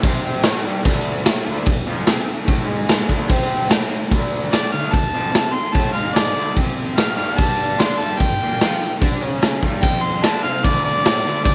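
Set in moderate spring reverb, this raw, swaggering garage rock excerpt at 147 BPM pairs a double-tracked, picked fuzz guitar riff with a gritty, up-front acoustic drum kit full of punchy kick and pumping stone-room ambience, while a jingly tambourine sits distant in the background from 0.5 seconds and a clear, present harmonica with light vibrato and overdrive takes a solo from 4.5 seconds.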